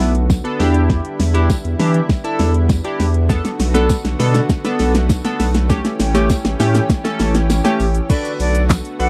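A thick, saturated sub bass sits up front in this energetic, bittersweet dance-pop excerpt, joined by glossy, chorused retro synth keys and a lush, warbling unison pad that holds sustained chords, all three pumping against the beat. An overdriven electronic R&B drum kit with a fat snare and metallic hats drives a build-up and drum fill through the first 8.1 seconds, while a jingly tambourine stays in the background. At 8.1 seconds an airy silver concert flute enters with vibrato and a slapback echo, all within a dry, close 1970s-style studio sound.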